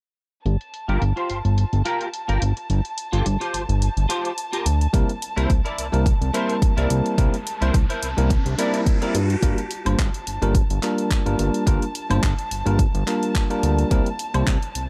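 The fat analog bass anchors this nu-disco excerpt, a thick, detuned sawtooth line pumping against the sidechain and sitting up front from 0.5 s, with a filter sweep moving across it through the opening section. Around it, a muted chamber string section holds dark, veiled, con sordino chords with vibrato and a soft attack, filtered and pumping low in the mix. A house drum kit of handclaps, hi-hat and woodblock carries a sleek, lightly swung groove at 107 BPM in G dorian, its tape-warm layers dulled by low-pass filtering. A clean, twangy electric guitar riff enters at 0.9 s with ensemble chorus and tape echo, while a bell-like tine electric piano and a punchy electronic kick join at 4.9 s as the harmony moves from Gm7 to C7. A brief electronic riser builds into the second section at 9.4 s, and the dry sound keeps the groovy mood tight and polished.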